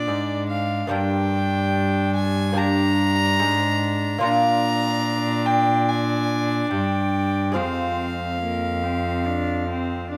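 From the first moment of this courtly, solemn 72 BPM renaissance-style consort dance in 4/4, an up-front gut-string violin carries the melody over a bright, delicate fingerpicked lute with double strings, a distant viola with light vibrato and a nasal, reedy bowed cello bass, all moving from Bb through Gm to Fm in a moderate stone-room reverb before the excerpt cuts off at 10.2 seconds.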